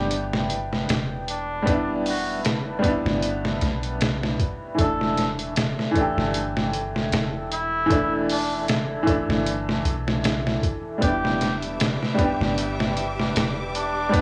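A gritty, compressed trip hop drum kit sits up front, its pitched-down, sampler-style hits giving a thumpy kick and a medium-tuned snare alongside hi-hat, all set at 77 BPM with a light 16th-note swing. This short, hypnotic and cinematic fragment in E minor moves from Em7 to Dsus2/E and back. A clear, woody upright piano carries the accompaniment, shimmering with tremolo and tape echo, while a soft, round 808-style bass adds deep sine-like notes with a fast attack that decays into darkness. A barely audible thumb-plucked concert harp rings out only in the opening second, and from 1.3 seconds a veiled, cup-muted trumpet takes the solo melody in a vintage jazz style, with vibrato and its own tape echo. At 11.0 seconds a lush, bowed studio string section enters with smooth, focused sustained chords. The whole recording carries the worn, warbling pitch drift of old cassette tape, light reverb and small room ambience.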